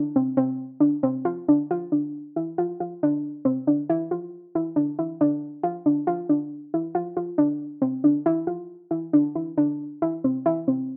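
This contemporary instrumental piece is cut from a longer work and has an urgent yet hypnotic mood, moving at 137 BPM in a straight 5/4. A single soft, round synth pluck carries the whole 11 seconds alone, staying within a narrow span from C4 to F4. Its tone is dark, built from a blend of triangle, sine, sawtooth and square waves with a noise layer, a sub octave and a filter sweep. A fast attack and a decaying tail give each note a clear shape, and chorus adds a gentle shimmer. Sitting up front in a light reverb, the pluck moves from a brief opening into a longer passage at 1.2 seconds.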